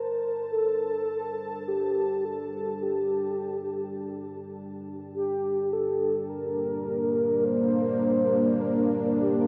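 Desolate and ominous, this ambient fragment, cut from a longer piece, drifts at 52 BPM in G minor, resting on a single G minor chord for its 9.5 seconds. A dark analog pad holds sustained chords throughout, fading in from the start, its detuned sawtooth and triangle tones thickened by a sub octave and chorus into a deep, moody, evolving bed. Over it, a mellow horn-like synth lead carries the melody between G4 and C5, its round, vintage voice warbling with vibrato and a filter sweep, softened by chorus and a diffuse ambient delay. Both parts sit up front, with the lead slightly louder than the pad. A huge, wet reverb with a long 8.1-second decay surrounds them, giving the fragment a vast, lonely sense of space.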